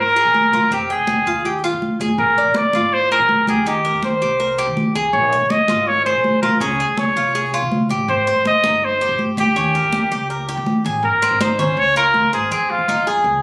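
A clear, punchy trumpet leads this short, danceable stretch of Cuban son and guajira in Ab major, carrying the melody up front with vintage pop-style vibrato. Beneath it, a mellow Cuban tres picks arpeggios on its metallic double strings, some of them octave-doubled, while a woody, thumpy upright bass plays pizzicato on steel strings. Bright, high-tuned congas join at 0.2 seconds, their thin, damped skins struck with hard hands and carrying the sound of a live room. The tempo is a brisk 163 BPM in a straight 4/4. The harmony moves through chords such as Bb7, Eb6, Dbmaj7 and Eb7 before shifting into a new section on Ab, Db and Fm7 from 11.0 seconds, and the trumpet drops out at 13.1 seconds. Caught on a phone in the room, the recording has the moderate reverb of a club, giving the whole a warm, danceable feel.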